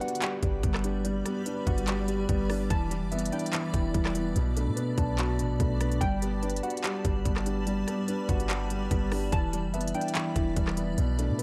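A deep, boomy 808-style bass enters at 0.4 s beneath a trap kit of hard-clipped kick, crisp hats, handclaps and rim clicks in this triumphant yet dreamy half-time hip hop piece at 145 BPM in G major, where a mellow tine electric piano spins delayed arpeggios over a soft, boxy felt-muted upright piano with audible action noise, a blurred, detuned granular cloud pad sustains Gmaj7, Em7 and Bm7 chords, and a warbly, lo-fi dusty pluck with chorus and delay drifts in the background as a second line until 10.5 s, inside a dark production carrying a faint mains hum.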